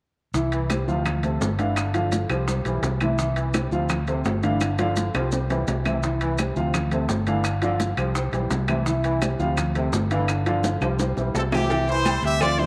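Drenched in a wet spring reverb, this joyful, danceable salsa excerpt moves at 169 BPM in C major, with a dark baby grand piano, its action noise audible, comping over a round, amped fingered electric bass held up front. Congas, bongos and cowbell, and claves sit in the background, while grainy maracas and ringing metal-shell timbales and agogo bells sound close, and a punchy trombone section with vibrato carries a second line. A brilliant, loose horn section with slapback echo arrives up front at 11.4 seconds to take the melody as the chords cycle through C, Dm7 and G5.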